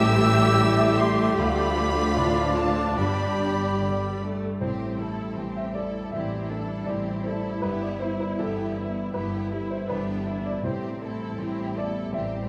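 Heard in a wet scoring-stage reverb, this excerpt from a longer cinematic film score for orchestra feels moving and sorrowful, unfolding in a rubato 4/4. A rich, close violin section carries the melody high above the ensemble with focused vibrato, while a second, lush violin section sings an expressive line beneath it. In the opening moments, a dark, very quiet cor anglais, a mellow, roomy clarinet and an airy silver concert flute add soft second lines, and a vintage-toned French horn section holds sustained chords in the background; these four parts fall away by about 4.3 seconds. Throughout, a baby grand piano with short, natural sustain provides accompaniment alongside a distant viola section, and a ringing, fingerpicked concert harp plays arpeggios. A warm cello section and a smooth-topped double bass section anchor the bass, as the harmony moves from Am7 through Dm and G back to Am7, then passes through Em/G before settling once more on Am7.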